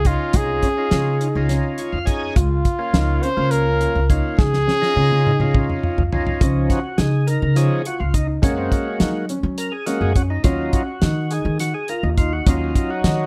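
Intricate and bright, this progressive instrumental band piece in 7/8 at 208 BPM (eighths) sits in Db major, with a clear, punchy trumpet with light vibrato carrying the melody until 5.8 seconds over woody, pizzicato upright bass with gut strings, a dry, damped 70s drum kit with a fat snare and tight kick, and mellow dark grand piano arpeggios. A gritty, overdriven tonewheel organ with key click and a slow rotary speaker adds a fill at 1.5 seconds, and after a drum fill it takes a solo from 6.4 seconds as the chords move from Dbadd9 through Bbm/Db to Gbadd9 and Ebmadd9. Light reverb lends a touch of space to this passage cut from a longer piece.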